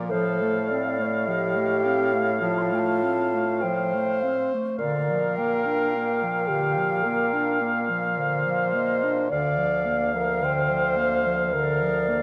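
A slow, rubato romantic movement for wind quintet in Bb major opens with the whole ensemble together: a hollow, wooden-toned flute carries the lyrical melody while an up-front oboe with vibrato sits on F5 as a second line. Beneath them, a mellow French horn with light vibrato and a close-miked clarinet shape the accompaniment, and a clear bassoon anchors the bass at 53 BPM in 4/4. The harmony moves from F/A to Bb at 4.8 seconds and on to Bb/D at 9.3 seconds, framed by a moderate recital hall reverb in this brief passage cut from a longer piece.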